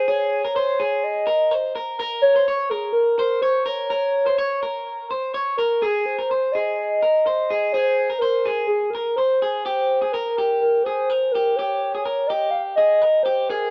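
Indie pop at 125 BPM in Ab major, breezy and bright, with a hollow, woody clarinet-like synth lead carrying the melody through chorus and plate reverb over electric guitar arpeggios from a small old amp that sound twangy and slightly broken-up. Both parts play from 0.0 to 13.7 seconds, the soft-attack lead sustaining with vibrato while the lo-fi picked guitar sits a little lower in the mix, moving from Dbsus2 and Bbm into Ab and a rootless Eb after 5.8 seconds. The production is dark and warm in a moderate club-sized room, and the excerpt is cut from a longer piece.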